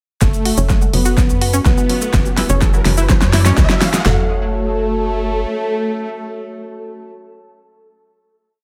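Dark, cinematic melodic techno, where a deep house drum kit of punchy kick, fat snare, claps, toms, hi-hat and shaker drives a build with a drum fill and a background riser from 1.5 seconds, beneath a tight sawtooth sequencer bass, a detuned analog pluck arpeggio and a soft octave-layered lead that both carry filter sweeps, chorus and tape echo, a big bright ring-modulated polysynth doubling that lead an octave lower, and a deep, wave-folded analog pad, the synths and bass pumping against the kick in an echo-heavy mix until the build gives way to a sustained final chord at 4.1 seconds.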